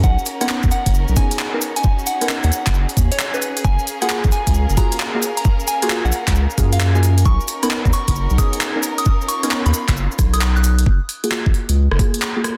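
A swung two-step beat at 133 BPM drives this bouncy, soulful UK garage excerpt in F# major. It is built on a knocking, tape-warm electronic kick up front, a crisp garage kit of handclaps, hi-hats and rim clicks re-recorded in a large room with a softly clipped snare, and a grainy cabasa tucked in the background. A deep, thick sine sub bass sits up front beneath dark, detuned chord stabs that warble through chorus and dub echo, while a close, expressive bowed violin section holds vibrato-rich chords that pump with sidechain, and a soft, pure FM bell carries the melody through its own chorus and dub echo over Bmaj9 and F#maj9 until the bell, strings and cabasa stop around 10.8 seconds, leaving bass, stabs and drums to finish.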